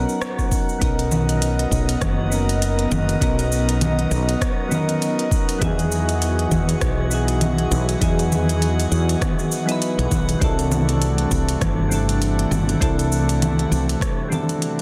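A woody fretless electric bass sits up front in this sunset chillout excerpt, its growly, round tone dark and punchy against a smooth, warm mood at 100 BPM in 4/4 with a 16th-note swing. Soft electric-piano-like synth keys carry the accompaniment with gentle, decaying notes colored by chorus, tremolo, digital delay and a filter sweep, while an airy, breathy pad enters at 0.8 seconds with slow-attack detuned chords and a noise layer. In the background, a drifting glass-harmonics texture adds calm, glassy overtones bathed in chorus and its own reverb. The smooth R&B drum kit brings cabasa, congas, smooth hi-hats and rim click with a tape-warm character and soft clipping on the snare, and a deep, layered electronic kick anchors the beat from 0.4 seconds. The harmony moves from Bmaj9 to Emaj9 at 5.6 seconds and on to C69, under light reverb and a dense, heavily limited master, before the piece fades out from 13.6 seconds.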